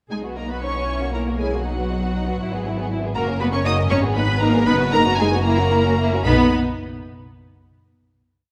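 A quick, spirited classical-period movement for string orchestra in B major, 6/8 at 78 BPM, with lush, vibrato-rich violins singing the cheerful melody over a second violin line of rocking two-note figures and sustained chords, violas and cellos doubling the tune at the octave with a focused, rich tone, and clear bowed double basses holding sustained bass notes up front, all set in the wet reverb of a scoring stage through a brief progression that ends on an F#7 before a final chord at 6.2 seconds.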